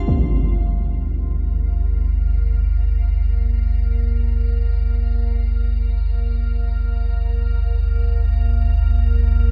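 Dark ambient drone in free time and G minor, ominous and unsettling, cut from a longer piece. A deep, rumbling drone sits up front in the low register, its slow-attack sustained tone colored by phaser and lush chorus, while an icy, crystalline glass pad hovers far quieter above it, fading in from 0.1 seconds with chorus and an airy, detuned shimmer. The whole passage is bathed in a moderate cathedral reverb with long, lingering tails.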